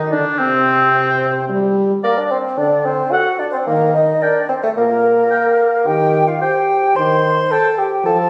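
A cheerful, spirited classical-period movement for wind quintet, cut from a longer piece, opens with flute, clarinet and French horn sounding together at a quick pace in a straight four. The silver concert flute carries the melody with an airy, metallic tone, vibrato and crisp attacks. The oboe joins a moment later with a clear second line, lightly vibrato and set up front. The bassoon anchors the bass, warm and forward with a light vibrato, while the French horn also sits close, its soft-edged, smooth-topped sound supporting the harmony. The mellow clarinet stays distant and roomy in the background as accompaniment, dropping out at 7.7 s along with the oboe. The whole passage rings in a moderate recital hall reverb, captured on a phone in the room, with added studio reverb and compression.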